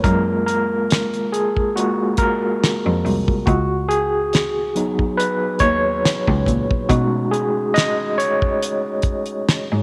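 A gritty, barky electric piano with medium tremolo, played through a combo amp, takes the lead up front in this smooth neo-soul and R&B fragment, moving through F#maj7, C#9sus4 and B13 chords over a lightly swung 16th-note feel. Beneath it, a single bowed cello carries the bass line with an even, vibrato-laden tone, while a damped 70s drum kit supplies hi-hat, a tight kick and a fat snare with a dry, mid-forward punch. Light studio reverb gives the short, cut-off passage a warm finish.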